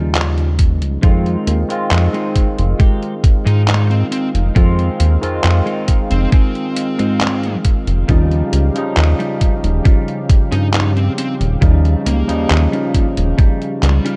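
This melancholic, hazy vaporwave excerpt opens with a barky tine electric piano through a combo amp, a clean, compressed guitar riff carrying 12-bit sampler grit, and an up-front, glossy chorused synth bass, soon joined by a thumpy electronic kick and a detuned 8-bit drum machine of handclaps and hi-hat re-recorded in a small room, then a lush, nasal unison pad in the background from 1.0 s, before a fuzz lead guitar with tape echo takes the melody at 3.5 s, all set in light reverb and cassette-tape sound over Eb9 and Fm7 chords.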